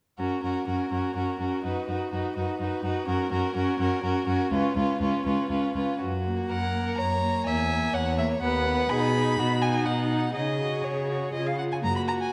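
Cheerful and spirited, this quick classical-period string quartet movement in F# major runs at 124 BPM in a rubato 3/4, with a rich, smooth-topped first violin carrying the melody over a close, vibrato-laden second violin line, an expressive viola accompaniment coloured by portamento, and an even, up-front cello bass, each part bowed by a single player and set in a wet scoring-stage reverb with a rolled-off top, as the harmony moves from F# to C#7 before a second section begins at 6.0 seconds, turns to B, and arrives on C# as the fragment breaks off at 12.3 seconds.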